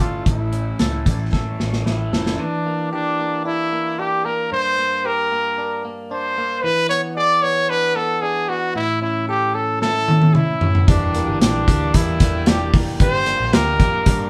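Jangly indie pop with a restless, wistful mood, carried by a breathy, close-miked trumpet melody with vibrato over twangy, bright clean electric guitar arpeggios, while a raw overdriven garage guitar with phaser, a round, foam-muted electric bass and a dark, up-front drum kit drop out after the opening bars, the drums returning with a fill at 9.8 s and the guitar and bass at 10.9 s alongside a woody, slightly detuned upright piano, all heard in a live-room reverb.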